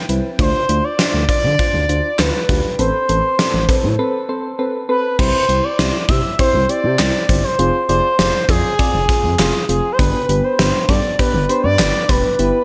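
A big, arena-sized sound with moderate concert hall reverb frames this nostalgic, bright synth-pop passage, cut from a longer piece. Up front, an expressive sawtooth lead glides between notes with vibrato, chorus, tape echo and slapback echo, over round, mellow electric-piano-like keys, a smooth, saturated gliding bass and a gated 80s kit with a fat snare, tight kick, handclaps, hi-hat and crash. A break arrives at 4.0 seconds, and at 5.2 seconds the harmony moves from Dm7 and Amadd9 into a C, Fm and G progression.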